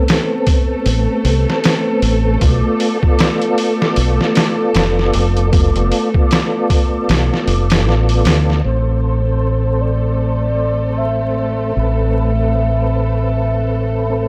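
Trip hop at 77 BPM in A minor, this cinematic, dark excerpt moves with a swung sixteenth-note feel over a dry, gritty hardware sound flecked with vinyl crackle. A mellow tonewheel organ carries the accompaniment throughout, its round tone colored by chorus vibrato, a slow rotary speaker, tremolo and tape echo, while a lush symphonic string section holds bowed chords beneath it with a grainy 12-bit sampler character. Up front, a compressed, pitched-down sampler-style drum kit with a thumpy kick, medium-tuned snare and hi-hat sits in a small room, joined at 0.9 seconds by a deep, punchy fingered dub bass. The kick drops out from 7.1 to 8.7 seconds, and the drums stop at 8.6 seconds as the harmony returns from Bm7b5 to Amadd9. At 8.7 seconds a pure, breathy sine lead enters with a soft attack, a gliding line and vibrato, colored by subtle chorus and dub echo.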